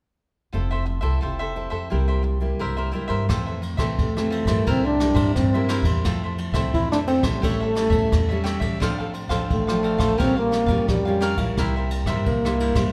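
Set in the reverberant acoustic of a church or concert hall, this playful, joyful samba and choro excerpt moves at 87 BPM in F major, with crisp picked cavaquinho, full-bodied fingerpicked nylon-string guitar and woody pizzicato upright bass laying down the accompaniment from the start. A distant jazz brush drum kit with dark cymbals and a punchy kick joins at 3.3 seconds. At 4.0 seconds a mellow, forceful trombone takes the solo melody up front with light vibrato and a smooth top, over changes that move from Fmaj7 and C7 through A7 to Bbm6.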